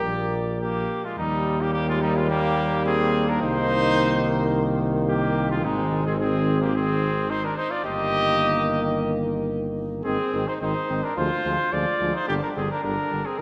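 Classical brass quintet music in Eb major at 108 BPM, noble and stately, with a warm, lightly vibrato-tinged lead trumpet carrying the melody up front over a clear second trumpet, a bright trombone and a clear French horn in the background, and a dark, soft-attacked bass trombone anchoring the low end until it stops at 13.2 seconds, all set in a wet church reverb as harmonies move from Bb through Cm7, Ab and Dm7b5 to a closing G5 in this fragment cut from a longer piece.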